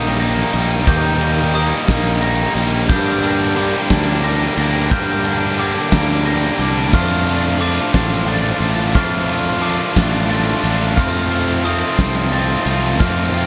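Cathartic and brooding, this post-rock excerpt in G minor moves at 59 BPM in a straight 6/8, with a growling, overdriven fingered bass up front, two picked electric guitars (one overdriven, one tightly distorted) playing riffs in the background, a huge arena drum kit entering at 0.2 s with a punchy kick, fat snare and bright crash and ride cymbals in a pumping hall, a sparkling, bell-like glockenspiel struck with hard plastic mallets ringing out arpeggios through analog delay, and a very quiet bowed string section holding smooth, expressive sustained chords with vibrato, in a dark, warm small-room production over a progression moving from Eb through Gm and Dm to F7.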